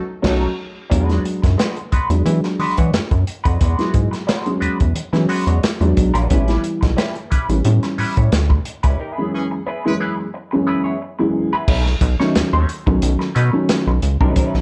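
A dark, lightly reverberant funk excerpt at 89 BPM struts with energy, as a rubbery, bouncy square bass and a crunchy, saturated breakbeat kit drive beneath woody upright piano stabs and a clean semi-hollow guitar with wah over chords moving from B9 through E9 and A9, while a distant horn section adds brief lines at 0.2 and 9.3 seconds, the latter inside a band break that holds an F#9sus4 until 11.7 seconds.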